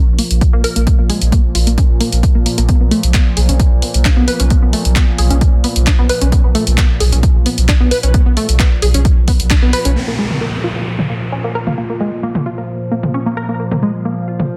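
Driving peak-time techno with an intense, driving mood, cut from a longer piece, where a punchy, up-front electronic kick and a tape-warm analog drum machine of hi-hats, handclaps, toms and crash drive a thick, saturated sub bass beneath an evolving, chorused analog drone. A tight, detuned sequenced synth riff, colored by phaser, cassette tape and tape echo, carries a filter sweep through the opening ten seconds, with the drone, bass, synth and drum machine pumping against the sidechain in a dense, heavily limited master with light reverb. After a band accent at 9.5 seconds, the kick and bass drop away by 10.0 seconds and a downlifter sweeps through the thinner closing passage.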